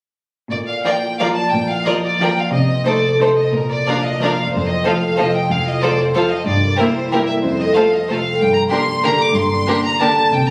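Classical orchestral ballroom waltz in Bb major, festive and elegant, moving in 3/4 at 170-202 BPM with a rubato feel. This brief cut from a longer piece opens at 0.5 seconds with a rich chamber violin section carrying the melody up front, its bowed tone smooth and even with vibrato, while a mellow, ringing concert harp spreads fingerpicked arpeggios beside it and a cello section anchors the bass. From 0.8 seconds a second violin section adds a supporting line and a viola section fills in the accompaniment with a focused, smooth-topped sound. The harmony travels from Bb through diminished colours to F and settles on G minor near the end. The whole ensemble sits in a reverberant recital hall, captured on a phone in the room with an audible studio ambience.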